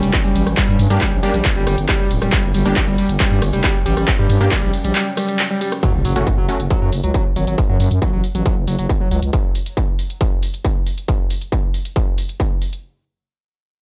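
A gritty, screaming overdriven synth riff with tube saturation and dub echo opens this driving, industrial peak-time techno excerpt at 137 BPM over a growling FM bass, a very quiet deep, moody ambient pad drone, an overdriven analog drum machine of handclaps, hi-hat, ride and rim click, a distorted, up-front kick and a punchy supersaw stab in the background, with the kick and drum machine re-recorded in a large room, before a brief break and a very quiet electronic impact at 5.8 s, when the Gm harmony gives way to F#5, the pad drops out at 5.9 s and filter sweeps take hold of the bass and lead.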